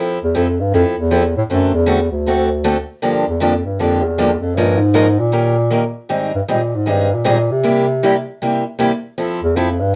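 A swung eighth-note feel at 156 BPM in 4/4 drives this charming, swinging jazz excerpt in F major, cut from a longer piece. A picked steel-string parlour guitar, bright and boxy, sits up front as accompaniment from the opening moment to 9.7 s, outlining a progression that moves from Fmaj7 through D7 and Gm7 to Bbm7, Eb7 and Abmaj7 before C7 returns it to Fmaj7. Entering at 0.2 s, a mellow bass clarinet carries the melody as a jazz-style solo in its low register, shaping phrases with light vibrato and scooped notes. Its tone comes across as roomy and slightly distant even while placed up front. A moderate studio ambience surrounds the pair, and the whole recording is coloured by worn cassette tape with a warbly pitch drift that gives it a wobbling character.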